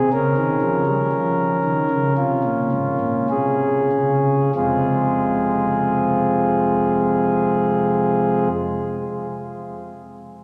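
A cavernous cathedral reverb with a long 5.4-second decay surrounds this short excerpt of a solemn, dark chorale-style classical piece for pipe organ, in 4/4 with a rubato feel that slows through its opening seconds. The chamber organ plays alone on a principal stop, sitting up front with a smooth, warm tone and a touch of chiff at the start of its notes, ranging from deep F1 up to Bb4. It moves from a Bbm/Db chord to Fm at 4.5 seconds, and the organ stops at 8.5 seconds while the reverberation hangs on in the space.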